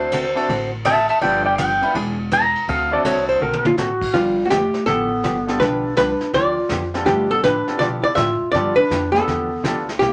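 A swinging, cheerful slice of western swing country, cut from a longer piece, moving at a lively clip with a strong swing feel. It opens on a clean lap steel guitar playing up front, its slide lines marked by volume swells, over a backing of woody upright piano, a picked hollow-body jazz guitar and a thumpy, gut-strung upright bass plucked low. A vintage brush drum kit with dark cymbals and a punchy kick keeps time, slipping in a brief fill just before the lap steel bows out at 4.1 seconds. From there a miked and amplified archtop guitar takes the melody, dark and compressed, while a breathy clarinet adds a whispered, intimate second line with vibrato and scooped notes in its lower register. A moderate studio ambience gives the ensemble a natural sense of space.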